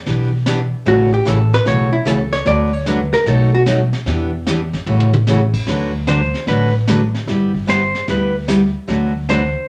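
Swinging and down-home, this cut from a longer western swing piece in D major moves at 150 BPM in 4/4 with a swung eighth-note feel. A full-bodied jumbo acoustic guitar picks the accompaniment up front, finger squeaks and all, while a woody pizzicato upright bass and a small-room brush kit with a high-tuned snare, tight kick and rolled-off top keep the groove moving. From 0.9 seconds a dark, clean, compressed hollow-body jazz guitar takes a picked solo line up front, and a brief drum fill at 4.9 seconds sets up the second pass. At 6.1 seconds a clean lap steel steps in with a slide melody, fingered and compressed, its volume swells sitting up front over changes that run through chords like Em7, A6, D6 and G6. A wet club reverb gives the whole band an intimate sense of space.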